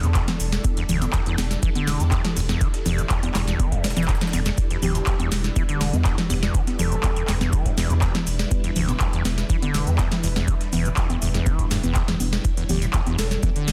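The sound is dense and heavily limited, with light digital ambience around a driving, raw acid house groove at 122 BPM in E dorian, resting on a single Em7 chord in this excerpt cut from a longer piece. A booming analog drum machine with crisp snare, handclaps, congas, shaker and metallic hats sits up front over an overdriven electronic kick, while a very quiet, gritty, pitched-up breakbeat kit adds hi-hat, shaker and a high-tuned snare from 0.2 s. A squelchy, resonant saw acid bass riff with filter sweeps, overdrive and tape echo rides over a thick, saturated sine sub bass, beneath lush vintage string-machine chords colored by phaser and ensemble chorus, all pumping against the kick, as a breathy flute-like lead with vibrato drifts in the background at 4.8 s and again at 12.7 s.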